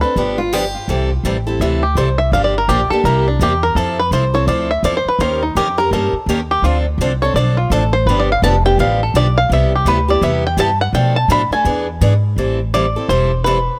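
Fiery and swinging, this acoustic string-swing excerpt in the jazz manouche style races along at 167 BPM with swung eighths, led by a twangy, percussive five-string banjo played with fingerpicks, which takes an up-front solo from 0.9 to 12.4 seconds. Beneath it, a bright steel-string guitar picks the accompaniment with audible finger squeak, and a woody, thumpy pizzicato upright bass on gut strings anchors the changes from G7 through Fmaj7 and D#7#11 to a closing Am7. A boxy parlour guitar adds a brief second line with analog delay near the start, all set in light reverb.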